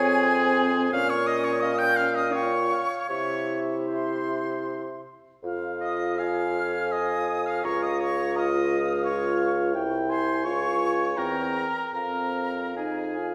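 Melancholic and yearning, this slow romantic movement for wind quintet unfolds in 3/4 with a rubato feel, cut from a longer piece and heard from further back in a wet scoring stage. An airy, bright concert flute with vibrato carries the expressive melody high above a warm oboe on the second line, while a clear, close-miked French horn and a dark, distant clarinet with a soft attack fill in the accompaniment. Beneath them a bassoon with light vibrato sits up front on the bass line, and all five play together through the full 13.3 seconds.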